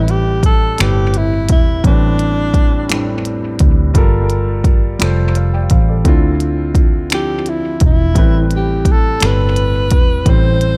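A slow, straight six-eight groove carries this sultry, yearning R&B excerpt, with an up-front electronic drum kit of finger snaps, clicky hi-hat and a deep kick under a dark, round, foam-muted electric bass. A natural-sounding grand piano plays the accompaniment throughout, moving through Am9, Gm9 and Dm9 before returning to Am9. A breathy, whispered, intimate tenor saxophone carries the melody with vibrato and scooped notes, pausing after 3.2 seconds and returning at 7.1, while tape echo on both saxophone and piano gives the small-room mix its echo-heavy glow.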